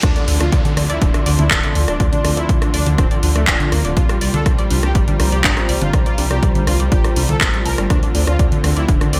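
A straight 4/4 pulse at 122 BPM drives this hypnotic, cinematic slice of melodic techno in D minor, taken from the drop of a longer piece. A punchy, tape-warm electronic kick sits up front beside a house kit of congas, handclaps, warm hi-hats and rim clicks treated with gated reverb, while a deep, rumbling detuned saw bass pumps beneath them. Over the shifting Dm7 and C7sus4 harmony, a soft, airy supersaw carries the melody through delay, supported by lush bowed strings holding sustained chords and a tight, mellow sequenced synth running arpeggios through chorus, phaser and digital delay. A reverse cymbal and downlifter sweep in the background until 4.0 s, a warbling, nostalgic lo-fi pad drifts in at 0.9 s, and a swarming, tense drone barely surfaces at 9.1 s. The mix has a bright 1980s-style digital sheen with light reverb, and the sidechain pumping on most parts gives the whole texture a steady breathing motion.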